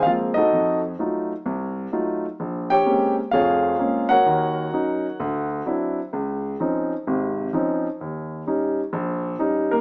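A relaxed swing at 128 BPM in 4/4 carries this short solo jazz passage, cut from a longer piece and tuned to A4 = 441 Hz. A single concert grand piano plays alone from 0.0 to 9.8 seconds, ranging from a deep F1 bass up to G5, its intimate, vintage tone sitting up front with audible action noise, through harmonies that move from Ab69 and F7b9 to Bbm9, Ebm7, D9 and Dbmaj9 before arriving on Eb7 at 8.0 seconds. The piano rings in a moderate large-studio reverb, yet the overall sound has the character of a small speaker.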